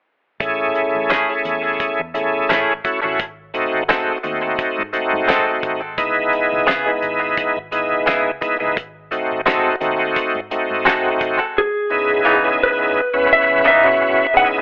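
A shouting, lightly overdriven tonewheel organ with key click, chorus vibrato and a slow rotary speaker dominates this smoky, mournful soul blues fragment at 86 BPM, alongside twangy, scooped stabs up front from a direct-recorded electric guitar with tremolo and digital delay. A dry 70s drum kit with a fat snare, tight kick, hi-hat and tambourine plays with a round, foam-muted bass in the background until 11.4 s. At 11.6 s a compressed, dark lap steel slide melody with plate reverb enters as the harmony settles into C# minor, all heard through a telephone-like sound in a moderate studio ambience.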